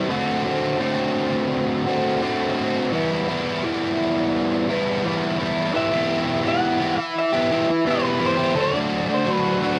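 An up-front, double-tracked overdriven electric guitar plays a picked riff through subtle chorus and cassette tape grit, moving through D5, Em and D chords in this hazy, dreamy rock piece in E minor at 85 BPM in a straight 4/4. At 5.8 s a second electric guitar through a small old amp enters with a compressed, slightly broken-up lo-fi melody, treated with analog delay. The home cassette recording carries light reverb, and the clip is cut from a longer piece, ending at 9.8 s.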